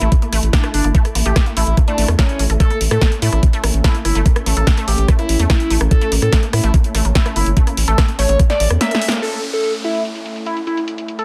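Gritty, screaming overdriven synth lead, a bright wave-folded unison pluck riff and a round, deep analog bass all sound together from the very start of this alien, psychedelic trance excerpt, moving in a straight 4/4 at 145 BPM in A major over a sustained A5 chord. The guitar-like lead carries the melody with vibrato, phaser and tape echo, its saturated tone colored by cassette tape, while the detuned pluck repeats its riff through tape echo. Sidechain pumping shapes the lead, the pluck and a dark, evolving wavetable pad that warbles in the background with chorus and its own reverb. Up front, the tube-saturated square-and-sine bass sits with a knocking electronic kick, and an overdriven techno kit adds a punchy snare, hi-hat, rim click and crash cymbal, with low-pass filters dulling the snare, hats and cymbals. The kick drops out at 8.5 seconds and the bass at 8.8 seconds, where a brief break and drum fill begin, with a band accent at 9.1 seconds. 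From 9.2 seconds the pluck falls away, and a downlifter enters under a filter sweep on the drums while the lead and pad carry on, all within a dense, heavily limited, dry mix.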